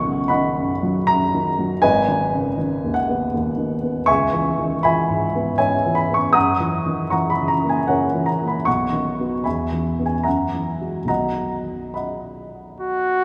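Romantic classical music for trumpet and grand piano in B major, this lyrical, rubato passage in 3/4 moves at a gentle 64-80 BPM, cut from a longer piece. A dark, mellow baby grand carries the accompaniment up front from the start, its intimate tone marked by audible action noise and short sustain as the harmony moves from B through G#m, C#m7 and F#7 before settling back on B. The clear, smooth-topped trumpet enters only at 12.8 seconds with a single F#4, and a church reverb with a 3.7-second decay gives the whole space a wet, resonant glow.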